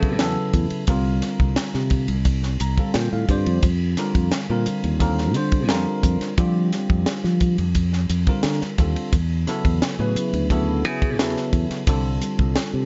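Slick and soaring, this short piece of electric jazz fusion, cut from a longer piece, moves at 87 BPM in a straight 4/4, with a bell-like tine electric piano bathed in lush chorus voicing suspended chords from Esus4 through C9sus4, F9sus4 and E9sus4 and slipping in a fill at 2.3 seconds, while a bright, growly fingered electric bass and a tight funk drum kit with dry, high-tuned snare and bright cymbals sit up front under light reverb and a dark-edged top end.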